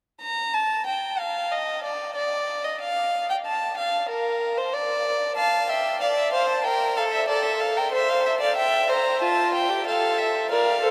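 A lone bowed violin with light vibrato and a reedy gut-string tone opens this joyful, elegant baroque-style fugue for string quartet at 93 BPM in 4/4; a richer second violin joins at 5.4 s as the harmony moves through F, Gm and C7; and a smooth-topped viola slips in at 10.5 s just before this fragment of a longer piece breaks off, all three period-style players sitting up front within a vast, echoing reverb.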